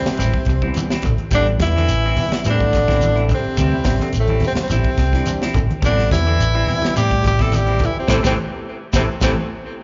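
Afrobeat at 106 BPM in A minor, intense and hypnotic, this short cut from a longer piece sits on an Am7 chord, with a bright, scooping tenor saxophone up front carrying the melody through slapback and tape echo while a veiled, bucket-muted trombone plays a second line in the background and a vintage combo organ murmurs very quietly underneath. A dry, tight funk kit with a high-tuned snare, a round, punchy fingered bass, low-tuned congas played with soft hands, and a grainy shekere drive the swung sixteenth-note groove, as two clean picked electric guitars, one twangy on arpeggios and one on stabs, add echoed texture in the background. The sound is that of a live gig heard through the venue's PA with club reverb and a dull top end, and the band hits an accent from 8.1 seconds.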